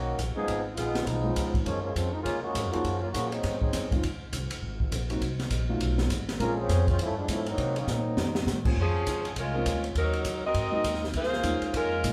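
Big band swing with a brassy, dramatic mood, this cut from a longer piece opens on a mellow, vintage-toned trombone section featured as the lead voice with light vibrato, over woody pizzicato upright bass, an open jazz kit with dark cymbals, a high-tuned snare and a boomy kick, and a dark, intimate baby grand piano whose action noise can be heard. A drum fill at 7.9 seconds leads into the saxophone section's entrance at 8.8 seconds, where it takes the melody up front with a smooth top and warm vibrato. The whole band plays live together in a large studio room with moderate reverb, moving through lush, colourful jazz harmony.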